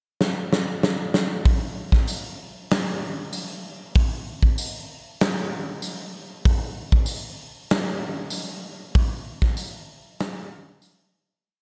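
A small room with light reverb frames this short rock piece at 96 BPM in a straight 4/4, carrying a dreamy, wistful mood. A big acoustic rock drum kit sits up front with a punchy kick, fat snare and hi-hat in a bright stone-room sound, opening with a fill at 0.2 seconds before settling into a half big groove. A jingly, close and dry tambourine joins at 2.1 seconds, and the piece fades out from 8.9 seconds.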